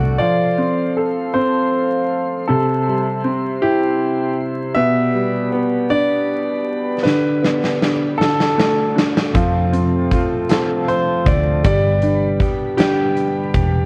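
This romantic, swaying six-eight pop ballad, cut from a longer piece, opens on a woody, slightly boxy upright piano laying down accompaniment over soft, flute-like tonewheel organ chords turning through a slow rotary speaker, with a faint key click. Electric guitar and a dark, foam-muted fingered bass sound only for an instant before falling away. A concert grand piano carries the melody up front, intimate and polished, its action noise audible and its long sustain ringing through the chords. Just after 7 seconds a huge arena drum kit arrives with a punchy kick, a medium-tuned snare and hi-hat, all coated in gritty 12-bit sampler character, and a drum fill leads toward 9.3 seconds. At 9.3 seconds the round, amped bass returns alongside clean, compressed guitar arpeggios recorded direct and sitting in the background. The whole mix sits in moderate studio ambience and carries a worn, warbling cassette-tape quality, with vinyl crackle and drifting pitch.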